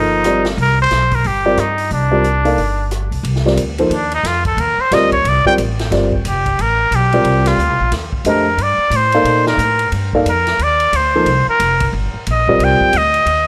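A nasal, straight-muted trumpet sits up front with vibrato, soft attacks and scooped notes, moving from the opening melody into a jazz solo at 3.2 seconds in this searching, hypnotic modal jazz passage cut from a longer piece. Beneath it, a dark, boxy upright piano with audible action noise and plate reverb comps until 12.9 seconds, while a thumpy pizzicato upright bass carries transformer saturation. A swinging big-band kit with punchy kick, ride and rim clicks sits low in the mix, all captured in a dry, gritty recording with light reverb.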